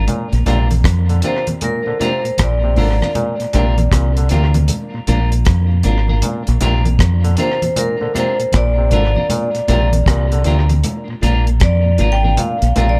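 A swung 78 BPM roots reggae groove in Bb mixolydian rests on a dark, tight-kicked drum kit playing hi-hat, kick and rim click with tape echo, and a round, punchy fingered dub bass sitting up front, while low-tuned congas ring softly in the background. The mood is uplifting as a metallic, close-miked vibraphone takes the melody from 1.2 seconds, its full ringing tone carried on tape echo, over a clean hollow-body guitar with echo, stringy clav arpeggios through a combo amp, and a mellow tonewheel organ with key click and slow rotary speaker. The room is nearly dry in this short section cut from a longer piece, staying on a Bb chord throughout.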